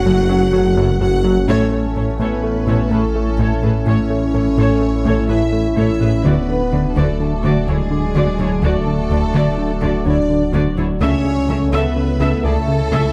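Close, detailed microphones and light reverb give this brooding, vast cut from a longer hybrid orchestral and electronic film score a clear, intimate sound, moving in 5/4 at 126 BPM with a straight feel. A very quiet violin melody lasts only until 1.2 s, while a mellow tuba holds a low note until 1.4 s. A second violin line carries on throughout, smooth and lush with vibrato. Distant, roomy French horns hold dark sustained chords over a chorused analog drone that evolves slowly in the background, and an expressive viola section adds accompaniment. The low end is layered: a menacing, beating detuned saw bass, a fat, nasal analog bass riff with a filter sweep, a rich cello section and a biting double bass section. A ringing, harp-like synth pluck spins soft arpeggios with chorus and a long release. The full ensemble hits an accent at 1.5 s as the harmony moves from F#m through A and D to A/C#.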